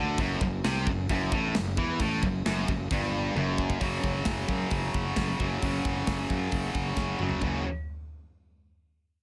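Heavy metal in a straight 4/4, this short cut from a longer piece feels heavy and aggressive from the first beat. A double-tracked, high-gain electric guitar sits up front with a bright, picked, distorted riff in its low register. Beneath it, a fingered electric bass with fuzz and overdrive adds a growly, direct-and-amped weight. The acoustic drum kit enters at 0.2 seconds, polished and airy in a big room, with a tight kick, a medium-tuned snare, toms, hi-hat and bright crash cymbals. Drum fills mark the turns at 3.4 and 7.0 seconds, as the harmony moves from a minor chord to a bare power chord. A light reverb rounds out the sound.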